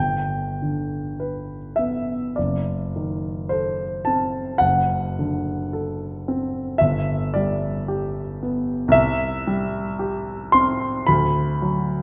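A grand piano sits up front and present, its tone warm with a short sustain, while a wet concert hall reverb with a 1.8-second decay surrounds it in a soft halo of space. This is a romantic classical nocturne for solo piano, serene and dreamy in mood, moving in 4/4 with a gentle rubato that lets the time breathe. The piano carries everything alone across the full 12 seconds, reaching from a deep F#1 in the bass up to C6 in the treble. Its harmony opens on G, darkens briefly through F#dim7 and D7/F#, then settles back to G at 6.8 seconds before moving on to C and D. Cut from a longer piece, the passage arrives on that D chord at 11.1 seconds and closes there, as if the phrase is still unfolding.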